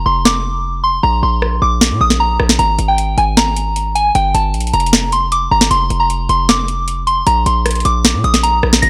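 This is an eerie, menacing trap and hip hop cut taken from a longer piece, running at 154 BPM in 4/4 with a half-time feel. A soft synth bell carries the melody high in its range, its pure, warbling FM tone given a vintage, full-bodied character by chorus, with each note striking fast and decaying. Beneath it, a hard-hitting 808-style bass delivers punchy, heavy sine tones with a noise layer, sharp onsets and decaying tails. The electronic trap kit comes in at 0.3 seconds with metallic hi-hats, rim clicks and a crisp snare that sounds re-recorded in a large room, though it sits up front. The opening stretch up to 2.6 seconds acts as a break, and the harmony moves through Bb, Absus2 and Gm, returning to Bb. The overall sound is dry and gritty, with little reverb, giving the bell, bass and drums a close, hardware-driven edge.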